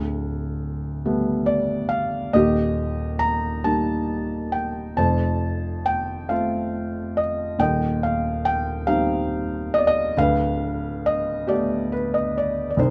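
Classical lyrical solo piano in 6/8 at a rubato 46 BPM in dotted quarters, tuned to A4 = 435 Hz: a wistful, dark fragment cut from a longer piece, in which a felt-muted upright piano sounds mellow and intimate, close and detailed in a dry room, as it spans D1 to Bb5 through a chord cycle from Gadd9/D to Eb, F and Cm/Eb before settling back on Gadd9/D at 10.2 seconds.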